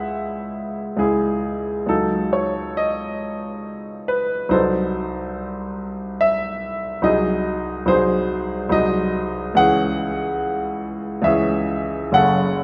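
A bright grand piano carries this romantic character piece alone, its tone brilliant and smooth with a vintage cast, set up front in a recital hall whose wet reverb lingers around it. The mood is passionate and stormy, moving in a triple metre with uneven beats and a free, rubato feel that lets the phrases push and hold back. The harmony starts on a minor chord, then passes through a suspended ninth color at 1.9 seconds and a diminished seventh at 4.5 seconds before a dominant seventh returns it home to the minor tonic near the close. The piano spans a broad compass from deep bass notes up into the upper treble, giving the passage both weight and sparkle. Tuned slightly below standard pitch, this brief fragment of about 12.6 seconds is cut from a longer work.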